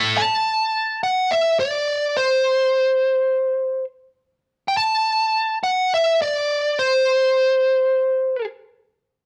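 A smooth, overdriven electric lead guitar carries the melody up front, its picked notes sounding warm in a high register from 0.2 to 8.5 seconds. This anthemic, bittersweet rock passage, cut from a longer piece, moves with a straight half-time feel in 4/4, and light reverb gives it the sense of a band playing live in one room.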